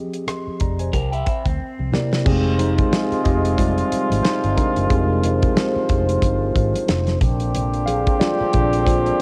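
A small-room home cassette recording frames this silky, smooth excerpt of lush 1970s-style soul with a swung feel. A mellow tine electric piano with phaser carries the accompaniment and takes a solo from 2.3 s, over an up-front damped drum kit with a fat snare and tight kick, round foam-muted fingered bass, and very quiet bright congas. A slightly broken-up electric guitar riff through a small old amp appears from 0.9 s to 2.2 s, overlapping a drum fill that starts at 1.6 s; then a soft-attack French horn section holds sustained chords in the background while a distant, roomy horn section with light vibrato adds stabs, as the harmony moves from Fm7 and C7 to Bb13.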